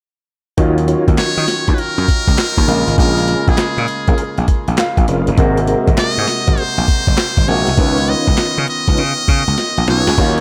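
A light digital ambience frames this slick, bouncy excerpt of new jack swing R&B, set at 100 BPM in 4/4 with a 66% sixteenth-note swing, in E-flat minor. The sampler-style drum kit is compressed and re-recorded in a large room, bringing a thumpy kick, a medium-tuned snare, handclaps, hi-hat and crash cymbal, with a drum fill at 9.6 seconds. An overdriven electric slap bass sits up front, bright and punchy, while a concert grand piano supplies polished, intimate accompaniment with audible action noise, deep lows and long sustain, adding a fill at 4.5 seconds. In the background, a clean tonewheel organ plays stabs through chorus vibrato and a slow rotary speaker, its key click showing through. From 1.2 seconds a close-miked trumpet with a metal mute carries the jazz-style melody, brilliant, buzzy and forceful, with scooped notes and light vibrato. Underneath, the harmony moves through Ebm9, Bbm7, Ab9 and Db9.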